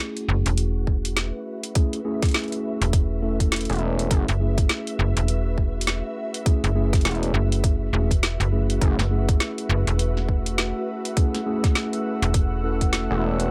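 Playful and swaggering, this glitch hop excerpt swings over a single F#m7 chord as mellow tine electric piano stabs with delay and an ethereal, airy pad with ensemble chorus ride sidechain pumping above a tight electronic kick, a drum and bass kit of woody snare and metallic hats, and a snappy FM slap bass, while a gritty, nasal distorted synth bass joins from 3.7 to 9.0 seconds and a warbling analog pad with 12-bit sampler grit enters at 8.8 seconds, all in a dry, up-front mix.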